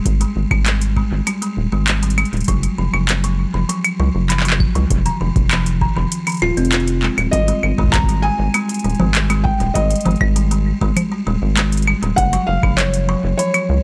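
A dry, gritty hardware sound frames this playful, intricate IDM cut at 99 BPM, where a buzzing, woody kalimba with 12-bit sampler grit and analog delay spins arpeggios over a rubbery, hollow square bass, an overdriven analog drum machine of claves, congas, handclaps and metallic hats, and a deep, overdriven electronic kick, until a soft, felt-muted upright piano with audible action noise and its own delay enters on melody at 7.3 seconds.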